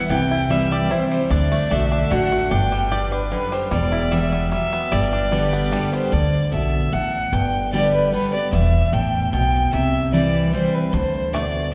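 Drenched in the long, wet reverb of a concert hall, this driving, joyful bluegrass waltz in 3/4 at 150 BPM in G major pairs an up-front, dark fiddle melody with an airy bow and light vibrato against a twangy, fingerpicked banjo that drops out at 6.1 seconds, while a bright, full-bodied dreadnought guitar picks the accompaniment and a thumpy, woody pizzicato upright bass anchors the low end.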